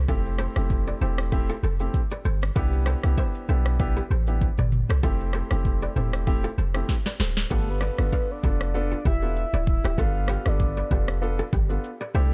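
A sunny, breezy afrobeats groove at 97 BPM in 4/4 moves with a lightly swung sixteenth-note feel, carried by an electronic, produced afro-pop drum kit set up front, its deep kick and sharp snare joined by rim click, shaker and toms. Underneath, an 808-style bass sits equally forward, boomy and sine-based with a noise layer, a fast attack and a mellow decay. A crisp, ringing acoustic kora plays a fingerpicked riff through a digital delay, while a polished grand piano adds present accompaniment over chords moving from Fmaj7 to Cmaj9 and back. A drum fill at 6.9 seconds leads into a new section at 7.5 seconds, where the harmony shifts to G7 and a soft octave-layered synth lead enters with a round, full-bodied triangle tone, a sub octave, detuned character, vibrato, chorus and phaser, carrying the melody until 11.1 seconds. The dry, dark production keeps this short cut from a longer piece intimate and close.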